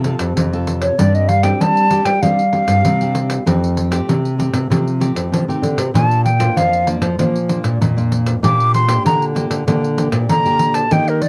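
Heard through the moderate booth ambience of a home cassette recording, this lively, bittersweet samba and choro fragment at 97 BPM sets a breathy, tongued concert flute with vibrato and cassette-tape colour to carry the expressive, up-front melody from 0.8 s, over a fingerpicked nylon-string guitar bass with a deep, full-bodied classical tone, a thumb-plucked nylon-string guitar accompaniment with fresh strings, finger squeak and its own tape grain, and a jingly, compressed, saturated pandeiro played with soft hands.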